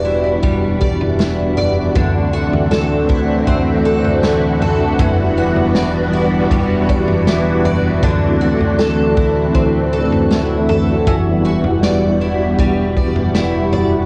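Lush string-machine chords with ensemble chorus, a bright, shimmering twelve-string acoustic guitar picking arpeggios through analog chorus and tape echo, and a dark, round fingered electric bass open this haunting, melancholic dream pop passage in E minor at 79 BPM. At 0.4 seconds a small-room vintage drum kit joins with a punchy kick, snare and toms as the harmony sways between Em9 and D9, all wrapped in moderate reverb and the dusky, softened top of a home cassette recording.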